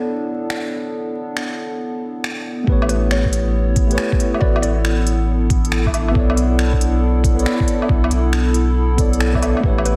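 A dreamy, reverb-soaked mix flecked with vinyl crackle gives this future garage fragment a melancholic, rainy mood, with a swung groove. A clean tine electric piano, carrying a filter sweep, analog delay and sidechain pumping, opens on Bm9 beside a warbling, detuned tape-like pad with chorus and pumping, and an overdriven organic electronic kit of finger snaps, smooth hi-hat and woodblock, re-recorded in a large room, enters at 0.5 seconds. At 2.7 seconds a round, pumping sine sub bass arrives up front with a muffled, thumpy, pitched-down kick, and from 2.9 seconds a woody, mallet-like FM pluck with chorus, phaser and delay drifts in the background.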